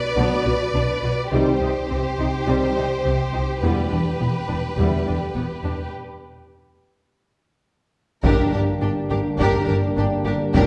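Set in a reverberant concert hall, this heroic, epic cinematic orchestral cue, cut from a longer piece, features a rich, close violin section carrying the melody over a soft-attacked second violin line, focused violas, lush cellos and smooth double basses, while mellow French horns and dark, roomy trombones hold sustained chords in the background throughout; a break at 5.9 seconds gives way to a distant taiko ensemble struck with hard sticks at 8.2 seconds.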